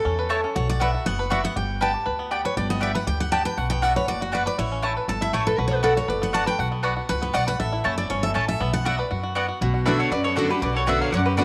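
Bluegrass in B minor at a brisk 239 BPM, driving and haunting in mood, this short section is cut from a longer piece. A bright, full-bodied steel-string acoustic guitar sits up front and carries a solo from the start until 9.6 seconds, over a chord movement that circles through A, B minor and G. Beneath it, a twangy banjo played with fingerpicks runs arpeggios, a thumpy, woody upright bass with gut strings anchors the low end, and a picked mandolin adds stabs from 0.3 seconds. At 9.9 seconds a second, brighter mandolin takes up the melody, joined by a clear, nasal fiddle line in the background with an airy bow. Light reverb and a small room ambience give the ensemble an intimate, close-knit sound.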